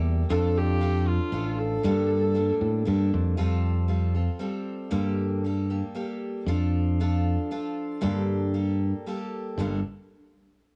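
Folk rock with a heartland rock lean, this dusty, reflective excerpt in 3/4 sets a picked steel-string acoustic guitar, carrying cassette-tape grit and plate reverb, over a direct, up-front fingered electric bass, while a dark, woody viola sings a brief bowed melody with vibrato and portamento from 0.3 to 3.1 seconds, all captured as a home cassette recording with small-room ambience and light reverb as the harmony moves between Dm/F, Gmadd9 and Fadd9.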